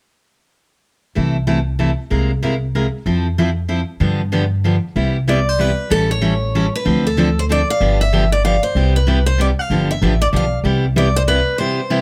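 A boxy parlour acoustic guitar and a pizzicato upright bass open this charming, lively passage of acoustic string swing in the jazz manouche style, cut from a longer piece. The steel-string guitar sits up front with a bright, fresh-stringed accompaniment in a swung 3/4 waltz metre. The bass has gut strings and a woody, dark, thumpy tone. At 5.3 seconds a second picked steel-string guitar enters up front with the melody, its full-bodied dreadnought voice carrying audible finger squeak. The harmony moves through colourful jazz chords such as C6, Caug7, A7 and Dm7 before settling on Cmaj7. The bass drops out at 11.4 seconds just ahead of a short break, and a moderate club reverb gives the trio a sense of a small live room.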